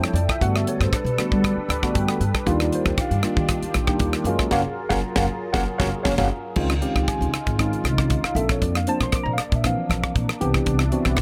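A clean tine electric piano, up front through a combo amp with analog chorus, supplies the accompaniment in this bright, soaring fragment of electric jazz fusion at 117 BPM, adding a fill around 1.4 seconds over lush chords that move from Gmaj9 through Ebmaj9, Gbmaj9, Dbmaj9 and Bbmaj9 to Cmaj9. A tight, dry funk kit with a high-tuned snare and airy, polished cymbals sits forward beside a thumpy, woody pizzicato upright bass, and the band hits an accent from 4.5 to 6.6 seconds while the drums fill into the repeat of the opening section. Beneath them, a detuned sawtooth pad with a slow attack, moving notch and filter swell evolves under its own chorus, all set in light studio reverb.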